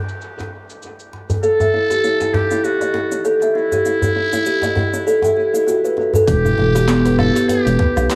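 Meditative and mystical, this organic downtempo excerpt opens with a faint electronic downlifter as an overdriven deep house kit of cabasa, handclaps, hi-hat and woodblock and a cracking, saturated djembe settle into an echo-soaked spring-reverb space; from 1.4 s a woody, ringing kalimba plays arpeggios up front while a buzzy, raspy trumpet with metal mute carries a gritty solo line through analog delay, and at 6.3 s a round, dark analog bass with sidechain pumping and a tight, tape-warm electronic kick arrive to deepen the groove.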